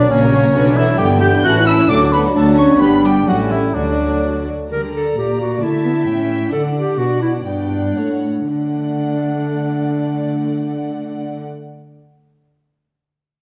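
A quick, lively and cheerful classical-period movement for symphony orchestra in 2/4 and D major at 110-134 BPM, where a soft, sul tasto chamber violin section carries the high melody over a clear clarinet, an airy silver flute, a smooth-topped cor anglais and a second intimate violin section, while violas, a dark, woody cello section, double basses, a present bassoon and a mellow French horn section fill out the harmony, joined briefly by barely audible hard-mallet timpani, until the flute, cor anglais, bassoon, horns and basses drop out at 4.5 s and the tempo slows between 6.1 and 8.5 s, in a wet recital-hall acoustic with a rounded, softened top end.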